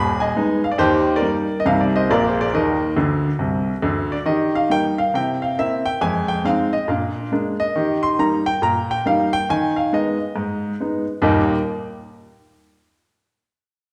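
A swung 138 BPM stride-piano jazz excerpt in Eb major, playful and exuberant, features a clear, intimate baby grand piano played solo and up front from 0.0 to 11.6 seconds across a range from Eb1 to C6, with audible action noise, a fill at 3.0 seconds, chords moving from Abm through Cm7, C7, Fm7 and Bb7 back to Eb, all set in a wet recital-hall reverb.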